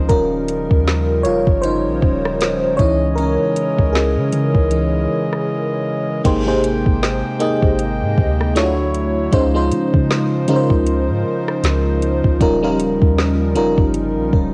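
Swung sixteenths at 78 BPM in 4/4 set an unhurried pulse for this romantic, tender contemporary R&B excerpt in Ab major, cut from a longer piece. The electronic drum kit sits up front with a soft kick, woody snare, metallic hi-hat, rim clicks and a crash cymbal, all carrying a tape-warm tint, while a deep, round 808-style bass with a sine-like, dark tone underpins it. A lush, dreamy FM electric piano layered with a soft pad leads with a solo from the start to 6.3 seconds, its detuned, chorused sound placed up front, and a brief break arrives at 5.5 seconds before the second pass begins. Behind it, a pipe organ on a principal stop holds smooth sustained chords in a baroque voicing, with a touch of chiff. The harmony moves through rich extended chords such as Eb9, Dbmadd9, Abmaj9 and Dmaj9, and the dry home cassette recording gives the whole a close, intimate feel.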